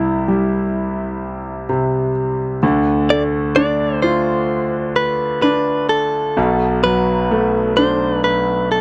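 A clear, intimate concert grand piano opens this melancholic, heartbroken pop ballad fragment with deep bass and audible action noise, moving from C to Dm, before a clean, compressed, direct-recorded electric guitar enters up front at 3.1 s to carry a picked melody as the harmony settles on Bm7, all captured in a dry, close 1970s-style studio sound.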